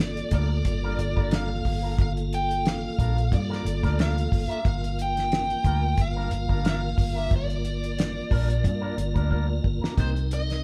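A biting, overdriven lead guitar carries the melody in this smoky, soulful soul blues excerpt in G minor, its picked lines sitting dark and gritty in the upper register at a relaxed 90 BPM in 4/4 with a light sixteenth-note swing. Beneath it, a tonewheel organ fills in the harmony with a piping, scooped tone, its key click, chorus vibrato and slow rotary speaker adding gentle motion, along with a touch of overdrive. A vintage muted fingered electric bass sits up front, round and punchy with a foam-muted, amped sound, while a cloth-damped drum kit of hi-hat, kick and snare gives a thuddy, dry pulse with a fat snare, tight kick and rolled-off top. Quietly in the background, an electric guitar with an envelope filter adds bright, twangy, clean stabs from 0.2 seconds. The harmony rests on Gm7 before moving to Cm7 at 10.0 seconds, just after a drum fill beginning at 9.3 seconds, and the whole band sounds as if it is playing live together in a moderate stone room.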